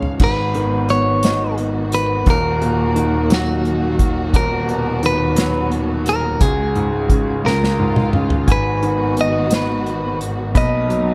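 A slow, straight six-eight sway at 58 dotted-quarter beats per minute carries this tender pop ballad excerpt, opening with fills from both the grand piano and the drum kit at 0.0 seconds. The up-front concert grand supplies the accompaniment with a bright, brilliant tone, deep bass and long sustain, its action noise audible in an intimate sound. Alongside it, a lush bowed string section holds sustained chords with expressive vibrato, portamento and a smooth top. The acoustic kit, played with bundle sticks in a small, airy room, has a punchy kick, a medium-tuned snare and dark cymbals, and adds a second fill late in the passage. From 0.2 seconds a clean, picked and compressed electric guitar carries the melody with a slapback echo, moving through a progression of G#m7, D#m, B/D#, C#sus4 and C#. At 8.5 seconds a fingerpicked, ringing concert harp slips in quietly in the background as a second line, also touched with slapback echo, as the chords return to G#m7 and settle on Bmaj7 within a dark production with light reverb.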